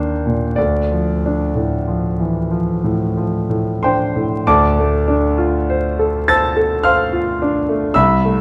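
A dark, warm production wraps this short fragment of a longer piece in the moderate reverb of a recital hall, with vinyl crackle lending it an aged, hazy quality. It is classical solo piano in an impressionist vein, wistful in mood, unfolding in a slow, rubato three-four. A concert grand sits up front, its tone clear and smooth with a deep bass and a vintage character, spanning from C2 up to A6 and tuned slightly below standard pitch at A4 = 438 Hz. An Eb5 sounds at the very start, and a Dmadd9 chord settles in at 0.6 seconds. At 4.5 seconds the opening idea returns over a Dm7 chord, and the fragment closes at 8.4 seconds.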